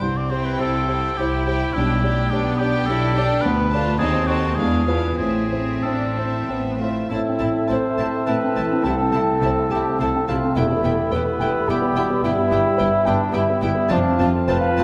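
A present, polished grand piano carries the melody in this passionate, lush classical excerpt in a rubato 3/4, joined by a punchy oboe second line, smooth bowed cello and distant double bass sections below, a vibrato-rich violin section singing its own melody high above, a soft sul tasto second violin section and a very quiet viola section in the middle, before a mellow, up-front trumpet adds stabs from 6.8 s and, at 7.1 s, an airy flute ensemble, a roomy clarinet, a dark bassoon and a vintage French horn section holding sustained chords enter, inside a scoring stage's moderate reverb.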